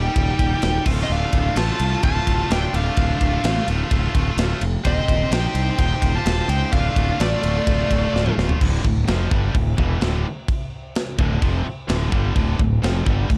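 A dark, warm studio production frames this heavy metal excerpt, cut from a longer piece and pushed along at 128 BPM in a straight 4/4 in D phrygian. Two high-gain lead guitars carry the opening, one playing the melody and the other a lower second line, both distorted and picked with delay, until they stop at 8.3 seconds. Beneath them, a pair of bright, picked rhythm guitars, one overdriven and one distorted, sit in the background driving the riff from start to finish. Up front, a fuzzy, overdriven fingered bass anchors the low end, while an acoustic drum kit with a tight kick, medium-tuned snare, crash, ride, toms and a rolled-off top enters at 0.2 seconds. The harmony moves from Eb to D minor and Cm/Eb before returning to D minor, and a drum fill at 8.1 seconds leads into a second section carried by the riff, bass and drums alone.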